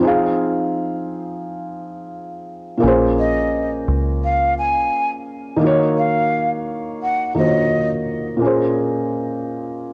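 A swung 86 BPM hip hop groove in Bb minor sets a reflective, melancholic mood, opening with a soft, thick-felt upright piano playing alone on cassette tape until a round, dark dub electric bass with tube saturation briefly joins from 2.8 to 4.9 seconds, while a breathy, hollow jazz flute with analog delay floats up front from 3.2 seconds, the whole home cassette recording set in spring reverb and a small room and cut from a longer piece.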